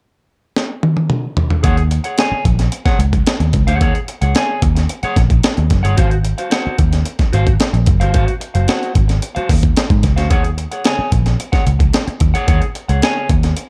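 A gritty, overdriven breakbeat drum kit with a thumpy kick and compressed, pitched-up sampler character opens with a fill at 0.6 seconds before a round, foam-muted picked bass and a clean, picked electric guitar join at 1.6 seconds, setting a hypnotic, funky 111 BPM groove in Eb dorian that moves from Ebm7 to Ab13 and back in this dark, dry cut from a longer piece.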